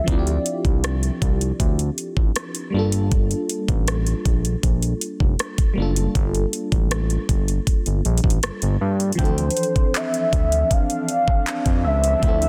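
Contemporary R&B at 79 BPM in D minor with a moody, late-night feel over Dm9 and Gm9 chords: a mellow FM electric piano with tremolo and phaser, a smooth sawtooth synth bass and an up-front electronic drum kit of knocking kick, metallic hats, handclaps and rim click (its snare softly clipped) carry the groove, while a velvety, detuned synth lead with chorus, tape echo and portamento sounds briefly at the start and returns at 9.2 seconds alongside a background analog pad with sidechain pumping and a very quiet, dark, wave-folded pluck, set in a dense, heavily limited digital ambience.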